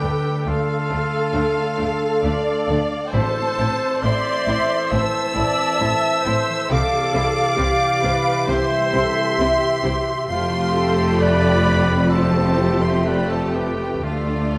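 A cut from a longer piece, this recording sits in a wet scoring-stage reverb with a prominent bed of vinyl crackle, giving the cinematic film score a soft, aged sheen. At 67 BPM in A minor, with a rubato 4/4 feel, the orchestra voices a longing, sorrowful mood over a progression that moves from Dm through Am and C to Fadd9 before returning to Dm. A lush, warm violin section carries the smooth, vibrato-laden melody up high. Beneath it a clear, distant solo oboe, an airy, close-miked flute section with a crisp attack, and a rich second violin section set in the background weave supporting lines. Expressive violas with portamento fill in the accompaniment, a dark, tight French horn section holds sustained chords, and a ringing, thumb-plucked concert harp rolls arpeggios. Dark cellos and a rich, close double bass section anchor the low end, while soft-mallet timpani with a round tone sound only briefly, from 3.1 to 4.4 seconds.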